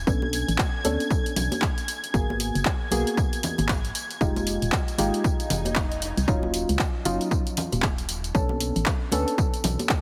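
A punchy, tape-warm electronic kick and analog drum machine with handclaps, hi-hat and tambourine set a swung 16th-note groove at 116 BPM in this late-night deep house excerpt in Eb minor, while dry, ringing congas sit in the background, a hollow, organ-like FM bass pumps beneath deep, mellow chord stabs carrying chorus, dub echo and a filter sweep through minor ninth chords, and a silky string pad with ensemble chorus and vibrato holds a single high note until 6.3 s as an electronic swell arrives at 5.4 s, the mix sitting in light reverb with a heavily compressed, radio-like sound.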